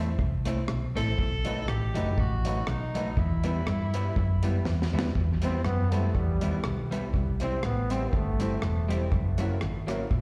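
This ska excerpt sounds like a live gig heard through the venue's PA, with light recital-hall reverb around it. At 121 BPM in 4/4, with a gentle swing on the eighths in E harmonic minor, the mood is mischievous and driving. Up front, a dark, round, amped hollow-body short-scale bass anchors the low end, while a deep reggae kit with a high-tuned snare, tight kick, rim clicks, hi-hat and a rolled-off top adds touches of dub echo. A slightly broken-up, picked and compressed electric guitar handles the accompaniment through spring reverb and slapback, and a woody, open upright piano sits in the background, its stabs trailed by dub and slapback echo. At 1.0 seconds a distant, roomy tenor saxophone with light vibrato takes the melody over Am, B7 and Em. A drum fill at 4.7 seconds leads to a clear trombone solo entering at 5.4 seconds, moving over Em and C with its own dub echo.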